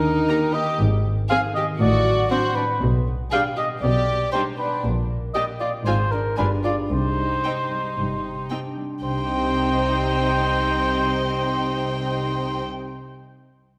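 Cinematic and mischievously quirky, this cue sets a mellow, distant cor anglais and a sul tasto studio violin section on a second line while a ringing, fingerpicked concert harp spins arpeggios alongside a dark cello section and a rich, floating double bass section, with soft-attack chamber violins taking the high melody and an intimate viola section accompanying from 0.3 s, in a wet scoring-stage reverb.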